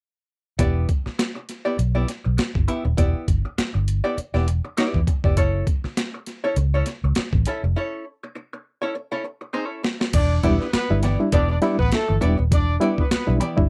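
Funk at 101 BPM in 4/4 with a swung sixteenth feel, this sly, hypnotic excerpt in E dorian sits on Em7 before moving to a rootless F#m7 and returning to Em7. From 0.6 seconds, a gritty, compressed breakbeat-style kit with a thumpy kick, medium-tuned snare, hi-hat and crash sits up front beside a dark, round, foam-muted fingered bass and a clean, hollow-bodied archtop guitar playing picked accompaniment through a wah. A break arrives at 7.8 seconds, closed by a drum fill that leads into the second section at 10.1 seconds. There a barky, reedy electric piano adds bright stabs through its built-in speakers, lightly overdriven with fast tremolo, while a punchy horn section carries a second line with light vibrato. The sound is a dry, close 1970s-style studio recording with little reverb, cut from a longer piece.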